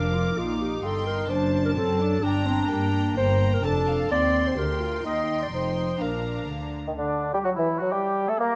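A full string section opens this cheerful, graceful classical-period movement together with a mellow, up-front clarinet, in a quick two-beat metre with a freely breathing rubato feel. The first violins carry the melody high in a dark, smooth-topped tone, played sul tasto with light vibrato and a soft attack, while the second violins add a gentle inner line. Beneath them, a rich, floating viola section fills in the harmony, and pure-toned cellos and double basses anchor the bass. The strings fall away around 7 seconds, leaving the clarinet's roomy solo line as a warm bassoon enters up front. A distant oboe joins, along with a silvery concert flute with tongued vibrato in the background. A moderate stage reverb gives the close, intimate strings and the woodwinds a shared sense of space in this short passage cut from a longer piece.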